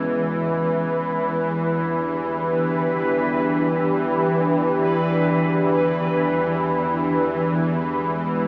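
In free time, this ominous, dark ambient drone fragment is anchored by a deep, moody pad of detuned sawtooth layers and a sub octave, alongside a tense, string-like bowed drone with vibrato and a noisy edge, both up front and sustained throughout the 8.5 seconds. Above them, a resonant, bubbling texture of random filter steps drifts through a fade-out while the harmony shifts to a new minor chord at 7.1 seconds. A wet spring reverb and a small speaker sound give the whole recording a boxed-in, haunted air.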